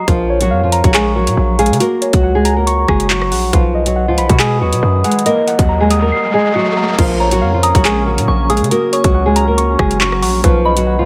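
Half-time drill at 139 BPM in 4/4 drives this ominous, tense excerpt in Bb phrygian, with an up-front electronic kit of hard-clipped kick, metallic hi-hats, handclaps, rim clicks and crash under a punchy, saturated 808-style bass. A fingerpicked classical nylon-string guitar carries the melody through a low-pass filter and tape echo, over muted, dark felt-like synth keys with chorus, as chords move through Bbm, Gb, B and Ebm. An electronic riser enters at 5.1 s and the drums drop out at 6.1 s, then a soft, pure synth bell with phaser and tape echo enters at 7.2 s and an ethereal, glassy FM pad settles into the background at 7.5 s, all in light reverb.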